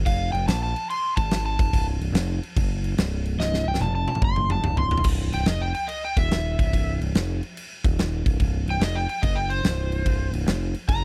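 Blues rock power trio with a southern rock streak, this gritty, swaggering excerpt swings at 144 BPM as a slide guitar, overdriven and played with fingerpicks, takes a solo over a growling picked electric bass and a huge arena drum kit with a fat snare and punchy kick, all three parts up front in a dry, close 1970s-style studio sound with small room ambience, while the harmony moves from Fadd11 to Cdim7(no3) and the drums then break into a fill from 3.4 to 5.1 seconds, after which the chords drop away.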